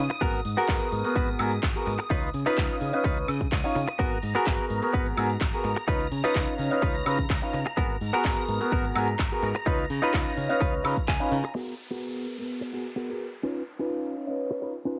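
Filtered disco house with a nostalgic, groovy lilt, this short cut from a longer piece rides a straight 4/4 pulse over a looping G#m9 to C#9 progression. A punchy electronic kick and a house kit of handclaps, crisp hi-hats and woodblock carry the groove, both given a cassette tape grit. A fingered electric bass with tube saturation holds the low end beneath a twangy, clean electric guitar riff and a brilliant grand piano accompaniment, both placed up front, while a swirling vintage string machine with ensemble chorus and phaser sustains chords high above. Sidechain pumping runs through the strings, bass, guitar, piano and the kit's hats, cymbals and percussion, and a low-pass filter shades the strings, bass, guitar and piano. The guitar plays a fill from 10.8 s, and after the drums and bass drop out around 11.5 s, a filter sweep and an electronic downlifter carry the remaining parts from 11.6 s to the close. 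The whole mix has a light reverb and the dusty, top-trimmed sound of a home cassette recording.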